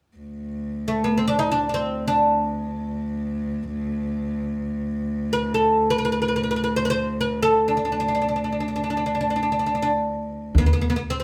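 Passionate and festive, this fragment of a Turkish makam ensemble piece puts a fretless, plectrum-plucked oud up front, its woody double strings ringing over a bowed cello drone on a low D. The cello is played sul tasto with light vibrato and an airy bow. At 10.5 seconds, a thumpy, gut-strung upright bass and a deep, distant clay darbuka enter in the background, as the band plays live together in one studio room with a wet reverb.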